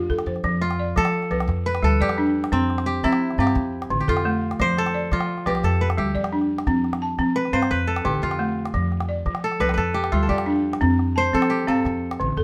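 Flowing and warm, this West African traditional piece for strings and xylophone moves at 116 BPM in a straight 12/8 in F lydian, cycling through F, G, C/F and Dm. A bright, ringing, fingerpicked kora sits up front and takes a crisp solo from 0.4 seconds, over a woody, buzzing balafon played with hard rubber mallets whose dry, band-limited, vintage arpeggios span a broad register. A pizzicato steel-string upright bass and a deep, close calabash anchor the bottom, and moderate studio reverb rounds out this excerpt from a longer piece.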